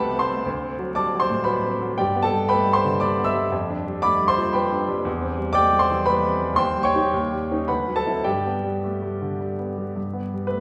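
Set in a triple metre with a freely pushed and pulled rubato, this romantic character piece for solo piano carries a stormy, brooding mood. A clear, natural grand piano plays alone from the first moment to 10.6 seconds, ranging from deep bass notes up into the high treble. The harmony moves from a dominant seventh into the home chord, then drifts through darker turns such as a minor chord over its third and an extended dominant before settling back home at 8.3 seconds. The piano sits up front in the mix, yet a lush recital-hall reverb places the listener further back in the room, and a vinyl crackle lends the sound an aged patina. The passage is cut from a longer piece.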